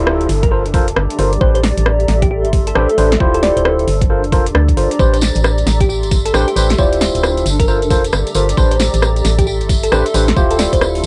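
Soulful and skippy, this two-step UK garage cut pairs tine electric piano stabs, bathed in lush chorus, analog delay and cassette tape, with an up-front, hollow, organ-like FM bass, a knocking overdriven electronic kick and garage drum kit with a woody snare and metallic hats, a round thumb-piano-like synth pluck melody roughened by phaser and 12-bit sampler grit, a blurred granular cloud pad that pumps under sidechain, a very quiet downlifter in the opening 1.4 seconds, and a jingly tambourine that enters at 5.0 seconds, all cycling through minor eleventh chords in a moderate booth ambience.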